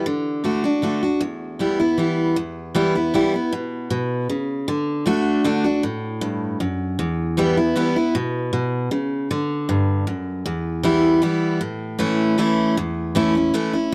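A brisk 3/4 lilt at 156 BPM, played with a straight feel, drives this short bluegrass fragment cut from a longer piece, its mood both driving and lonesome in E dorian. A lone picked steel-string dreadnought guitar, bright and full-bodied with fresh strings, sits up front in a dry, close 1970s-style studio sound with small room ambience, ranging from E2 to F#4 as it moves between D and Em. At 11.6 seconds the harmony shifts to A as a new section begins, carrying the tune to its cut at 13.9 seconds.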